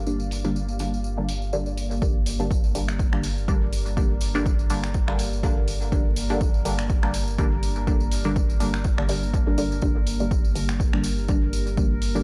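Cavernous, meditative dub techno with vinyl crackle and a dry, gritty hardware sound, where a muted, detuned sawtooth chord stab sits up front with chorus, phaser and dub echo over a round sine sub bass with tube saturation, a dark full-bodied pad with 12-bit sampler grit, a glassy texture of drifting overtones in the background, a jingly tambourine, and an overdriven analog drum machine of finger snaps and hi-hat with dub echo. The stab, bass, pad and texture all pump to the sidechain until a punchy layered electronic kick enters at 2.0 s as a filter sweep begins on the stab.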